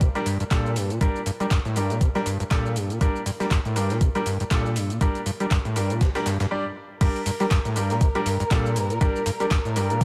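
A lightly reverberant, gritty acid house cut in G minor drives along at 120 BPM with a swung 16th feel, led up front by an overdriven electronic kick and a squelchy, resonant sawtooth acid bass riff with filter sweeps, chorus and tape echo. A booming analog drum machine adds metallic hats, handclaps, shaker and crash, while a very quiet, compressed breakbeat kit contributes snare and hi-hat, and a brilliant concert grand piano punctuates with echoing stabs. After a short break at 6.5 seconds, the drop at 7.0 seconds brings in a dark, lush bowed string section holding sustained chords that pump with sidechain compression.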